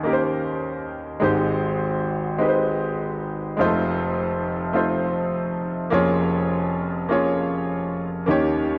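Gospel in Ab major at a slow 51 BPM in 6/8, this hopeful, soulful excerpt features a brilliant, up-front grand piano playing solo with tape echo through Eb7, Abmaj7, F7 and Bbm7/F chords, set in a moderate concert hall reverb and colored by worn, warbling cassette tape with pitch drift.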